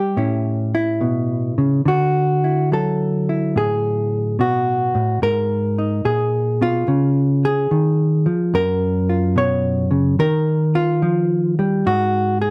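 A dark, lightly reverberant sound frames this warm, playful solo jazz excerpt at 72 BPM in 4/4, where a clean, compressed hollow-body electric jazz guitar sits up front, fingered with a swung, rubato feel from F#2 to C#5, moving through chords such as A9, Dadd9, G#madd9 and F#maj7 in a passage cut from a longer piece.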